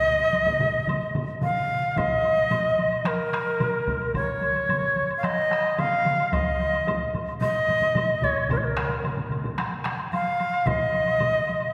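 Japanese traditional taiko ensemble music at 110 BPM in a straight 4/4, driving and powerful, led by an airy, reedy bamboo shakuhachi up front playing a tongued, vibrato-laden melody between Bb4 and F5, while several taiko parts struck with heavy and hard sticks, some compressed and saturated, one close and dry, another in a live room, join from 0.1 s with a further drum layer arriving at 2.0 s, a woody woodblock sits in the background, and a church reverb with a 2.9 s decay wraps this short cut from a longer piece.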